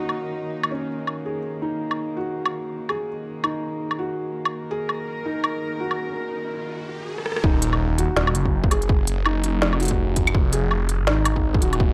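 A dry, gritty hardware sound with light digital ambience frames this dark, spacious half-time drum and bass excerpt, cut from a longer piece. It opens with a studio cello section holding soft-attack bowed chords with light vibrato, pumping under sidechain, while a felt-muted upright piano plays mellow arpeggios coloured by vintage 12-bit sampler grit and analog delay. An organic electronic drum kit enters at 0.1 seconds, up front and overdriven, with a woody snare, crisp hats, rim clicks and woodblock, carrying a swung sixteenth-note feel. A riser builds in the background from 6.0 seconds, and after a drum fill the drop lands at 7.4 seconds with an impact and sub drop as the cellos stop. From there a hard-clipped, tape-toned electronic kick and a swirling, thick detuned saw bass with phaser and tube saturation take the low end beneath the piano and kit.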